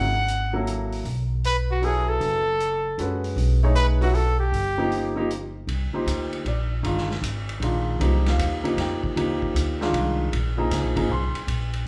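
Recorded as a band playing live in one large studio with moderate reverb, this cool, hypnotic piece of modal jazz swings in 3/4 at 155 BPM. A breathy, close-miked trumpet with soft attacks and scooped notes carries the melody until 5.3 s, over an intimate baby grand piano with audible action noise, a thumpy, woody pizzicato upright bass on gut strings, and a vintage kit with dark cymbals and a punchy kick. From 5.7 s the music settles into C minor, with the piano accompanying over chords such as Cm9 and Bb7sus2 while bass and drums carry on.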